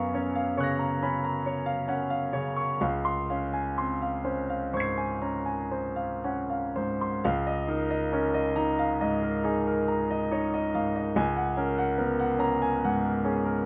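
A clear, vintage-toned grand piano sits up front with long sustain in this hazy, luminous fragment of impressionist solo classical music, moving in a rubato 9/8 at roughly 38-48 BPM in Db major across a range from Db2 to C7. Its Gbmaj7 and Dbmaj7 harmonies give way to Db69 at 7.2 seconds and then Gbadd9/Db at 11.2 seconds, all under light reverb, in a passage cut from a longer piece.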